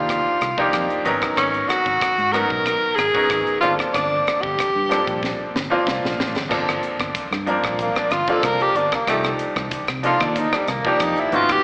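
Funky, slick electric jazz fusion at 93 BPM in G minor, this fragment of a longer piece has a tenor saxophone carrying the melody up front with a clear tone, vibrato, subtone, soft attacks and scooped notes, over a brilliant grand piano whose action noise and long sustain sit intimately close. A growly, amped fingered electric bass and a crisp, polished fusion drum kit with a high-tuned snare, tight kick, hi-hat, rim clicks and crash cymbal support the harmony as it moves through Cm11, Abm11 and Gm11. A drum fill at 5.2 seconds leads into a saxophone solo from 6.5 seconds, all heard as a live club gig through the venue's PA, with recital hall reverb and an AM radio sound.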